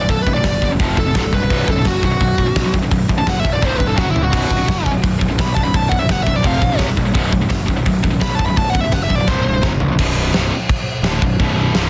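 A high-gain lead guitar solo opens this dark, relentless heavy metal excerpt at 170 BPM in B minor, sitting up front with distortion and a tape echo trailing its picked melody between E4 and B5. Beneath it, a tight distorted guitar in the background and a very quiet overdriven second guitar both pick through a low riff in straight 4/4, moving across power chords on B, C, F and F# around a B minor center. A fuzz-laden picked bass growls at the bottom, bright and direct. The big acoustic drum kit is the loudest part, with a punchy kick, a fat snare, crash, hi-hat and toms, heard mid-forward with a rolled-off top. Drum fills break in at 4.0 seconds and again from 9.3 leading into 10.0 seconds. The solo ends at 9.6 seconds, and a brief closing passage on B minor carries the riff guitar, bass and drums to the cut, all in a dry, dense, heavily limited modern master.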